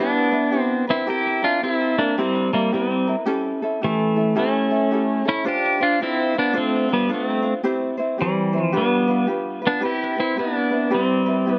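A moderate studio ambience surrounds this languid, dreamy Hawaiian excerpt in C major, set at 110 BPM in 4/4 with a swung eighth-note feel and tuned slightly low to A4 = 435 Hz. Up front, an electric pedal steel guitar carries the melody with a clean, compressed tone, played with fingerpicks and slide, shaped by volume swells and colored by tape echo. Beneath it, a light, bright acoustic ukulele is thumb-plucked with plate reverb, accompanying a gently moving progression that starts on Em7 and comes to rest on Cmaj7 at 9.8 seconds.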